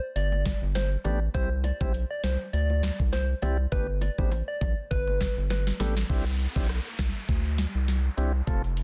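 Dancehall at 101 BPM in C major, this sunny, summery clip sways on a 16th-note swing, cut from a longer piece. An electronic afro-pop kit sits up front from the start, its knocking kick, sharp snare, rim click and metallic hats carrying the sound of a large room, while a round, deep analog bass with a filter pluck and fast attack anchors the low end beside it. A soft, keys-like FM lead carries the melody until 5.9 seconds, gentle and bright with vibrato, chorus and delay, as low-tuned bongos played with hard hands tap in the background. A clean tonewheel organ with audible key click fills in from 1.0 seconds as the harmony moves from Gsus2 through C to Gadd9. After a drum fill, a downlifter sweeps in at 6.1 seconds over a Cadd9 as the bass, drums and organ continue to the close in a dense, heavily limited modern mix.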